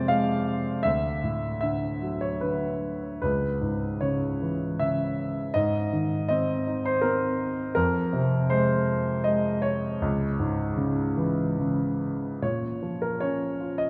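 In a flexible, rubato 3/4 at 70-82 BPM, this lyrical classical excerpt for solo piano unfolds with a melancholic, reflective mood. The grand piano sounds warm, natural and up front, ranging from C#2 to F5 as the harmony drifts through chords such as Fm, Dadd9, C#m and G# before turning to A#m at 12.4 seconds. A long, wet church reverb surrounds the instrument with the resonant air of a large hall.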